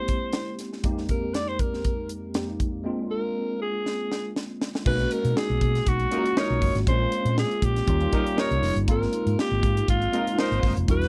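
Polished 1980s jazz-funk pop at 120 BPM with a light swing, glossy and breezy in mood, captured dry and close in a 1970s-style studio. A growling, raspy alto saxophone with vibrato carries the melody up front over a clean tine electric piano with ensemble chorus and a crisp fusion drum kit with bright cymbals, a high-tuned snare and a punchy kick, which plays a fill leading into the second section. The round, dark hollow-body bass enters at 4.9 seconds under chords moving from C7b13 and Fm11 to Bmaj13, and a mellow, distant horn section adds a tight second line from 6.1 seconds in this passage cut from a longer piece.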